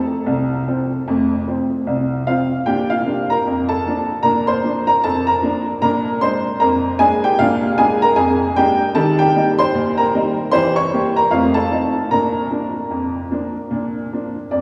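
Ragtime piano in B-flat major, a jaunty, cheerful 2/4 at 76 BPM with a lilting swing on the sixteenths, played by a solo upright piano from the first second to the close at 14.6 s. The instrument sounds worn, woody and slightly detuned, sitting up front with a boxy edge. A long cathedral reverb washes around it, and the chords pass from F through B-flat and B-flat seventh to E-flat, a diminished turn and F seventh before settling back on B-flat in this cut from a longer piece.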